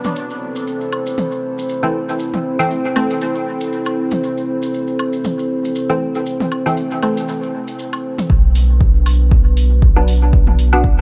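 This excerpt from a longer dub techno piece opens on a dark, detuned analog pad holding sustained chords, pumped by sidechain and spread with lush chorus. Overdriven electronic toms and woodblock soaked in dub echo play alongside grainy, mellow maracas. The tempo sits at 118 BPM in 4/4 with a swung sixteenth feel, and the mood is meditative and hazy. A muted, filtered chord stab with a quick pluck and short decay soon comes in up front, colored by chorus, phaser and dub echo. The harmony rests on A minor until 8.3 seconds, when it moves to B minor: the maracas stop, and a soft, round sub bass with sidechain pumping arrives with a deep, tape-warm electronic kick, both placed up front. A layered electronic hi-hat joins at 8.6 seconds, and the whole is set in a light reverb.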